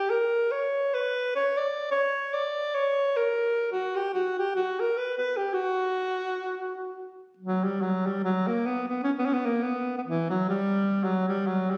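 In free time, this short fragment from a longer Balkan folk piece unfolds as a lone alto saxophone solo in F# Phrygian dominant, tuned to A4 = 442 Hz. The mood is fiery yet bittersweet. The saxophone sits up front with a mellow, classical-style tone, a light vibrato, a soft attack and a smooth top, moving between E3 and D5. A slapback echo trails its phrases, and a moderate recital hall reverb surrounds it in a room captured on a phone. The opening material runs until 7.4 s, when the same section returns and carries through to the close at 11.8 s.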